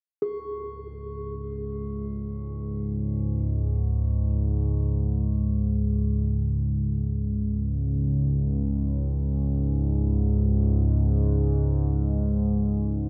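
Unfolding in free time, this cavernous, dark ambient drone excerpt opens at 0.2 s with a soft bronze singing bowl ringing on G#4, its metallic, slow-beating tone struck with a felt mallet and sitting low in the mix. At 0.8 s an up-front analog drone enters with a slow attack, its vintage sawtooth and pulse-wave voice warbling and evolving through pulse-width modulation and chorus across C#2 to G#2, sustained with a long release. A wet cathedral reverb with a 7.0-second decay envelops the whole in a dark, warm production.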